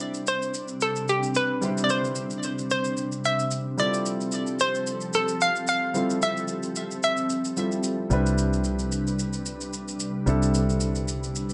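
Moderate room reverb and a softened top end frame this relaxed, soulful amapiano excerpt at 111 BPM in C major with a light 16th-note swing, where a hollow, bouncy square-wave pluck carries the melody through chorus and digital delay until 7.8 s over a polished baby grand piano, a glassy, ethereal FM pad holding sustained chords and an electronic shaker, before a dark, round fingered electric bass enters at 8.1 s as the harmony moves from Cadd9 through Fmaj9 to Cmaj9.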